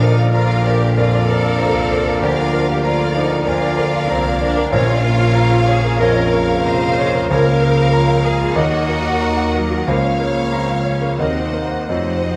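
Brooding and passionate, this romantic movement for piano and orchestra unfolds with a pliant rubato, as a clear, polished concert grand carries the melody up front with deep bass and long sustain alongside a lush violin section. Beneath them, a woody second violin section, a hollow flute and a very quiet, distant clarinet trace second lines, while a mellow bassoon and a smooth viola section accompany, trombones and warm French horns hold sustained chords, and focused cellos join the double basses on the bass. The harmony turns to the minor at 4.7 s, where hard-mallet timpani sound until 5.6 s, and the whole is bathed in a wet recital hall reverb.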